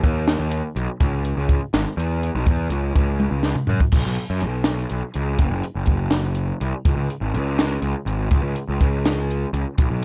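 A picked electric bass with fuzz and a compact cocktail drum kit start together in this intricate, playful cut from a longer math rock and midwest emo piece, moving in 6/8 at 82 BPM with a straight feel. The overdriven bass growls bright and direct between F#1 and F#2, while the small-room kit sounds smooth and dark, with a high-tuned snare, punchy kick, hi-hat, toms and crash under a rolled-off top; both sit up front. A drum fill from 3.2 to 3.9 seconds carries the pair into a new section that runs to 10.0 seconds, in a dry, warm production.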